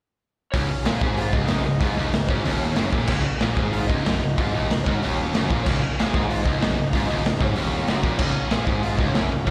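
Rebellious and rowdy, this short punk rock cut from a longer piece charges along in a straight 4/4, with all five parts playing together from 0.5 to 9.5 seconds. Up front, a raw garage drum kit pounds out kick, snare, hi-hat and crash cymbal, its punchy kick and medium-tuned snare sounding gritty and saturated with a dark, rolled-off top. Two picked electric guitars carry the low riff, one crunchy and overdriven with slapback echo, the other tight and distorted, both with a bright edge. Sitting further back, a fuzz picked electric bass growls beneath them, while a lead guitar through a small cranked amp plays the melody with a lo-fi overdriven tone, slapback echo and delay. The whole band comes across like a live gig heard through the venue's PA, with little reverb on the players yet the ring of a recital hall around them.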